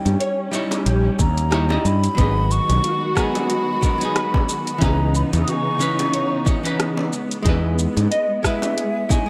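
Wistful and smooth, this sunset chillout excerpt in G# minor moves at 91 BPM with a swung sixteenth-note feel, as a pure, hollow silver concert flute with vibrato and tape echo carries the melody over a clean, dark archtop guitar, also echoed, and a veiled, con sordino string section holding lush chords. A round fretless electric bass sits up front beside a soft electronic kick that arrives at 1.2 s, while a layered deep house kit with overdriven, metallic hi-hats, rim clicks and shaker, plus very quiet, distant high-tuned bongos, fills out the groove. In the background, a mellow fingered electric guitar adds chorus-tinged arpeggios, all within a light digital reverb as the chords move from D#7b9 through G#m7 and C#m9 to Emaj7.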